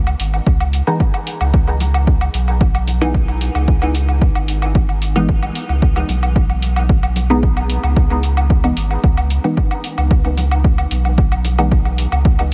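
A deep, round sine sub bass opens this hypnotic, nocturnal dub techno excerpt in C# minor at 112 BPM, pumping under a sidechain as layered woodblock and congas trail dub echo and an up-front electronic hi-hat and punchy, tape-warm kick arrive within the first 0.5 seconds. From 0.9 seconds a muted, detuned chord stab built from sawtooth and square waves plucks through a filter and decays into phaser and echo, holding on a C#7(no3) chord. Light reverb gives the steady groove a dark, enveloping space.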